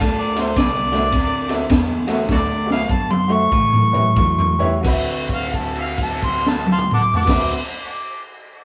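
Soulful and swaggering, this electric blues shuffle in D mixolydian swings its eighths in 4/4, with a tempo between 86 and 108 BPM that slows over the first stretch, and it is cut from a longer piece. Up front, a harmonica carries the jazz-style solo melody with light vibrato, tongue slaps and scooped notes, its punchy, smooth-topped tone pushed through overdrive and analog delay. An electric guitar through a small old amp plays a compressed, picked riff with a slightly broken-up edge, while a woody pizzicato upright bass sits in the background. The breakbeat kit is gritty and saturated, with dark cymbals, a high-tuned snare and a punchy kick, and it rolls through a drum fill from 2.3 seconds. A concert grand piano joins at 0.4 seconds with intimate accompaniment, its action noise audible, as the chords move from D7 to A7 and settle on D13 at 4.8 seconds, where a held note rings out. The band plays live together in a moderate stone room with a reverb time of about one second.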